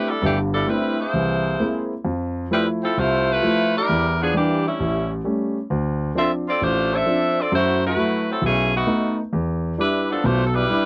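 A bright saxophone section carries the melody up front, its tight, vintage big-band sound shaded with a light vibrato as it ranges from D#3 to E5. Beside it, a warm grand piano with short sustain supplies the accompaniment, also sitting up front and reaching down to G1. This joyful, energetic jazz cut from a longer piece swings at 132 BPM in 4/4, both parts playing together from start to finish across its roughly 11 seconds. The harmony moves from C6/9 and an augmented seventh into a new section at 2.0 seconds, passing through Fmaj7, half-diminished chords and dominant sevenths before settling on Em7. The dry, close sound of a 1970s-style studio is touched with only light reverb.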